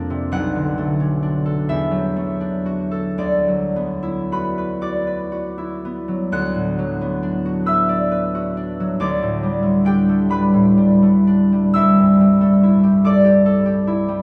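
Rubato in 6/8, this wistful, gentle classical passage for solo concert harp lets warm, fingerpicked chords such as Bm9, E9sus4 and Gadd9/D ring out across a span from B1 to F#6, bathed in a long, wet cathedral reverb that seems to place the listener further back in the room.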